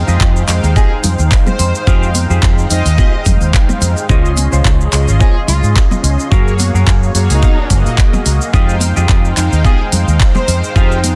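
Nu-disco in F minor at 108 BPM, this short excerpt from a longer piece has a sensual, sleek mood, riding a 4/4 groove with a light 16th-note swing over Fm9, Dbmaj9 and Gbmaj9 chords. An up-front electronic kick knocks hard beneath a layered pop kit of crisp hi-hats, handclaps and cabasa, while tube shaker and congas sit in the background with a small-room, acoustic feel. A bright, punchy fingered electric bass with an envelope filter is pushed forward, and a mellow synth brass pad built from detuned sawtooth and square waves with a sub octave holds sustained chords, colored by chorus, vibrato, a filter sweep, sidechain pumping and slapback echo. A clean semi-hollow electric guitar plays a fingered riff between F4 and F5 through analog chorus and slapback echo. From 0.8 seconds a smooth, closely miked studio violin section carries the melody with even, bowed vibrato, roughened by vintage 12-bit sampler grit and tape echo. 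The mix is dry and dense, with a heavily limited modern master.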